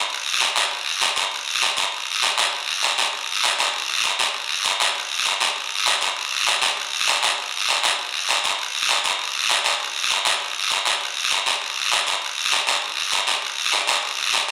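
A brisk, straight 4/4 pulse at 198 BPM drives this joyful, festive Latin piece, cut from a longer work, where a raspy, acoustic guiro sits up front and plays from 0.1 to 14.5 seconds, its sound carrying a live-room air inside the wet reverb of a large studio.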